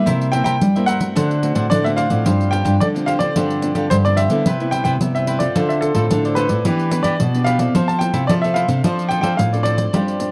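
Joyful, festive samba and choro fragment in which an intimate baby grand piano, its action noise audible, carries the melody over crisp picked cavaquinho, two fingerpicked nylon-string guitars (one supplying the bass with faint finger squeak, the other adding chords) and a jingly pandeiro struck with hard hands, all captured in a dry, close 1970s-style studio sound.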